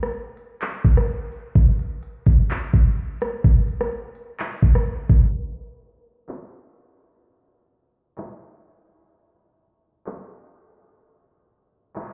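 Hip hop excerpt at 127 BPM in 4/4 with a half-time feel, blissful and dreamy, built on an electronic trap drum kit of handclaps, crisp hi-hats, a knocking kick and rim clicks that sits up front with overdrive and vintage 12-bit sampler grit, the whole sounding muffled as if through a wall with a low-pass filter and stone room reverb, while a filter sweep runs from 5.3 seconds to the end at 12.1 seconds.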